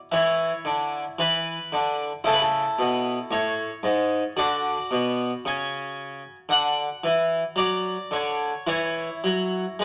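A plucked, brilliant Flemish-style harpsichord with three sets of strings sits up front in a moderate stone room, playing a serene, dance-like baroque-style suite movement in a rubato 4/4 alone from 0.0 to 9.8 seconds, its full tone spanning G#2 to G#5 over chords that move from E5 through A and Bm back to E5 in this short cut from a longer piece.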